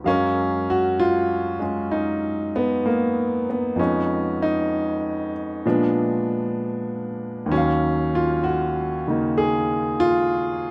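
At a slow 64 BPM in 4/4 with a gentle swung lilt, this wistful, melancholic jazz ballad fragment in Eb minor is carried entirely by a solo grand piano, spanning Eb2 to F5 and moving through Gbmaj9, Fm7b5 and Bb7b9 before settling on Ebm9 at 7.5 seconds. The piano sits up front with a clear, intimate and natural tone, long sustain and audible action noise, while a moderate echo-chamber reverb gives it a lingering, roomy glow across the roughly 10.7-second excerpt.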